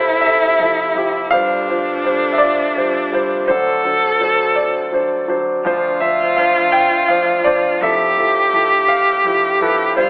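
This short excerpt sounds as though it comes through a telephone line, narrow and filtered, set in a moderate studio ambience. It is an acoustic folk-pop ballad in 6/8 with a straight feel, and its mood is nostalgic and hopeful. A grand piano with short sustain carries the melody up front, ranging from deep bass notes to bright upper tones. Beside it, a single bowed cello plays a second line with vibrato, its tone rich, nasal and boxy. Far behind them, a soft, breathy pad holds sustained chords with a slow attack, long release and chorus, its detuned sawtooth and noise layer giving it a mellow haze. The harmony moves from Fmaj7 through G7sus4, D7 and Dm7 before returning to Fmaj7 at 7.8 seconds.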